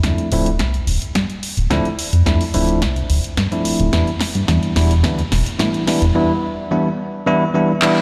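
Bathed in a lush hall reverb and heard as if played on a big sound system in a bare room, this sleek, groovy nu-disco excerpt at 108 BPM in D dorian builds up over 8 seconds, with a bell-like, bright tine electric piano pumping to the sidechain with slapback echo over chords moving from Dm7 to Em7 at 3.9 seconds, a fat, saturated analog bass with a filter sweep holding down the low end until 6.1 seconds, a punchy, tape-warm house kit of handclaps, hi-hat and snare driving a drum fill, and a very quiet, tight, dry kick drum that drops out at 5.7 seconds.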